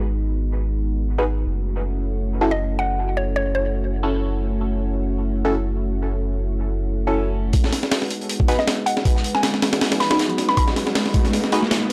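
Opening on a lush, warbling unison pad with chorus over a deep, round dub sub bass, this dark, frenetic drum and bass excerpt at 158 BPM in G# phrygian moves from G#m7 to F#m7 while a nasal, band-passed chord stab with phaser and dub echo enters at 1.2 s and a woody, mallet-like FM pluck adds brief melodic figures. At 7.5 s the sub bass stops and two breakbeat kits enter: a compressed, up-front sampler-style kit with a thumpy kick and high-tuned snare, backed by a saturated, small-room acoustic kit with a rolled-off top sitting in the background. The passage builds toward the end with a filter sweep on the pluck and an electronic riser from 9.5 s, all captured as a dry, gritty hardware recording.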